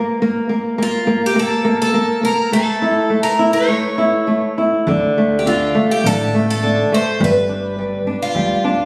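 The picked twelve-string acoustic guitar carries the melody from 0.8 seconds, its bright, shimmering, octave-doubled tone sitting up front with a boxy, parlour character, fresh strings and audible finger squeak. Beneath it, a fingerpicked flamenco guitar opens the excerpt alone at 0.0 seconds and holds the accompaniment throughout, its tone warm and up front. This fado-style ballad in D minor moves at 104 BPM in 4/4 with a rubato feel, and its mood is longing and mournful. An upright bass enters at 4.9 seconds, plucked pizzicato with a woody, dark, thumpy sound from steel strings, sitting low in the mix. The harmony begins unaccompanied by chords before moving through A, D5 and G. A moderate concert-hall reverb surrounds the playing, and the recording, captured on a phone in the room, carries studio reverb and compression.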